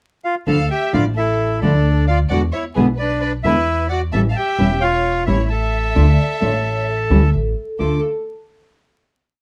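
The upright bass drives a tango rhythm of uneven groups of three and two eighths in 4/4, yet the feel stays rubato, giving this short, complete piece a passionate, tense character. Beginning with a brief pickup at 0.2 seconds, the reedy, boxy bandoneon carries a motif-based melody in period phrases, partly doubled in octaves and placed up front. A lush studio violin section adds a smooth, bowed harmony line with vibrato, mostly in thirds. Meanwhile, a classical nylon-string guitar, thumb-plucked with fresh strings, sounds short tango chords, and the pizzicato bass comes through woody and dark. At 6.0 seconds a bright, ringing vibraphone with medium hard mallets and medium motor vibrato enters with answering phrases in the melody's rests, before the piece settles on a final chord at 7.8 seconds. Close, detailed microphones, light reverb and a layer of vinyl crackle give the recording an intimate surface.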